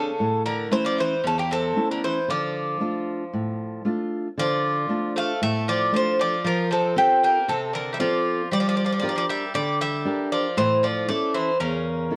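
Tense and intense, this Greek folk excerpt for bouzouki band in D minor moves at 116 BPM in a straight 4/4 and speeds up throughout, with a metallic, up-front bouzouki carrying the melody in plate reverb over a second bouzouki line in its lower range and a fingerpicked steel-string acoustic guitar accompaniment, all in a moderate studio room on worn cassette tape with warbly pitch drift, as chords pass from A through Dm, F and Gm back to A, and a new section begins at 4.4 seconds.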